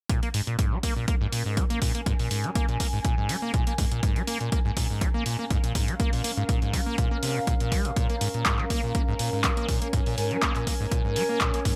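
Playful and trippy, this acid house excerpt moves at 122 BPM in 4/4 with a light 16th-note swing, resting on a single Bbm7 chord throughout its roughly 12 seconds. A squelchy, resonant sawtooth acid bass riff with filter sweeps sits up front alongside a dry, overdriven analog kick, while a punchy drum machine adds overdriven handclaps and hi-hat. From 0.4 s a warbling, nostalgic, lo-fi pad of detuned saw and triangle tones drifts in with slow attack, chorus, phaser and sidechain pumping, all set in a moderate small room.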